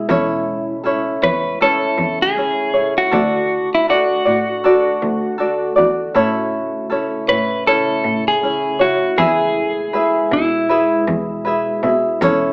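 A relaxed 4/4 pulse at 79 BPM carries a gentle 16th-note swing through this carefree, sunny acoustic pop excerpt in A major, cut from a longer piece. A thumb-plucked tenor ukulele sits up front with a light, acoustic tone, plucking out the accompaniment from the start. Beneath it, a single bowed cello holds the bass with a focused, slightly nasal and boxy sound touched by vibrato, while a glassy FM pad hovers in the background, its ethereal sustained chords thickened by ensemble chorus and its own reverb. At 1.2 seconds a clean electric guitar enters with a dark, compressed, fingered melody placed up front, and it carries on until 11.0 seconds. The harmony moves from A over E to D, back to A, then E. The band sounds as if it is playing live together in one large studio with moderate reverb, heard through a small speaker.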